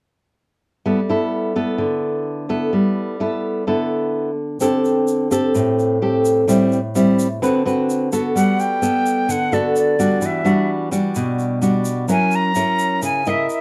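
A straight 4/4 bossa nova groove at 128 BPM in G major carries this romantic, sunny excerpt, opening at 0.9 seconds with an up-front, fingerpicked nylon-string guitar whose fresh strings and finger squeak give its classical accompaniment a warm presence. A close, grainy egg shaker joins at 4.6 seconds, and at 8.4 seconds an airy silver concert flute takes the melody with soft attacks and vibrato. The chords move from G69 through Am7 and Gmaj9 to a closing F#7, all set in a dark, warm studio sound with moderate room ambience.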